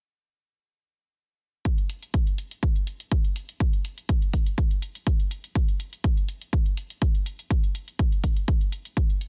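A dry, dense and heavily limited mix opens this short progressive house excerpt at 123 BPM in a straight 4/4, with a euphoric, expansive mood. A punchy, layered electronic kick drum with a tape-warm character sits up front from 1.7 seconds to 9.1 seconds. A quieter layered electronic hi-hat, re-recorded in a small room, runs alongside it until 9.3 seconds.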